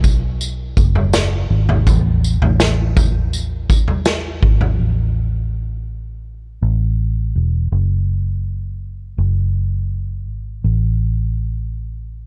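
A straight 4/4 pulse at 82 BPM opens this dreamy, floating dream pop fragment, with a vintage acoustic drum kit of boomy kick, medium-tuned snare, tambourine and toms sitting up front in a small, pumping room until it stops at 4.8 seconds. A foam-muted, fingered electric bass, round and amped, holds the low end between E1 and B1 and carries on alone to 12.3 seconds. The production is dark with little reverb, and the drums have a rolled-off top.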